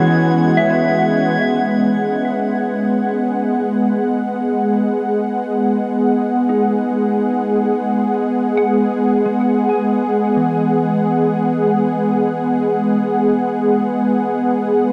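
Floating in free time, this luminous ambient passage in E major rests on an Emaj7 chord, tuned to A4 = 442 Hz. Up front, a warm analog pad holds sustained chords throughout, its detuned sawtooth tone smooth and soft-edged, with chorus. Beneath it, a mellow electric guitar plays dark, clean, fingered arpeggios with a compressed sound, subtle chorus and delay, fading in from 1.4 s. At the very start, a drifting glass-harmonics texture adds calm, glassy sine overtones with a slow attack, long release, chorus and its own reverb, before it stops at 1.5 s. A huge, wet ambient reverb with a 7.9-second decay surrounds the music, which is cut from a longer piece.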